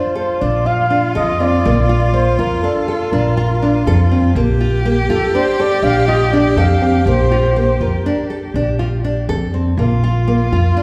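Heard from further back in a recital hall with a 1.6-second reverb, this short contemporary chamber piece, cut from a longer work, moves restlessly in 11/8 at 243 BPM (eighths) with a straight, shimmering feel, resting on a Bbmaj7 chord in Bb major. A breathy flugelhorn carries the melody in an intimate jazz style, its soft attack, scooped notes and vibrato giving a mellow, whispered, smooth top before it stops at 8.3 seconds. Beneath it a single bowed cello plays a focused second line between F4 and G4, with vibrato. A dark, full-bodied nylon-string guitar fingerpicks deep classical arpeggios, with finger squeaks audible. Entering at 0.4 seconds, the pizzicato upright bass sits up front, woody and bright with steel strings, anchoring the low end.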